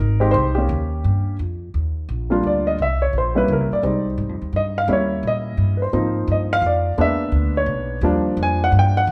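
Swinging in a brisk 3/4 at 172 BPM, this short cut from a longer jazz piano trio performance in Eb major carries a sophisticated, warm mood. A plucked upright bass with a woody, steel-string tone sits up front beside an intimate baby grand piano with a natural, short sustain and audible action noise; the piano carries the melody and then takes a solo from 1.7 seconds to the close at 9.1 seconds. Extended chords such as Ebmaj9, C7b9 and E7#11 color the harmony, and the players sound live together in a large studio with moderate reverb.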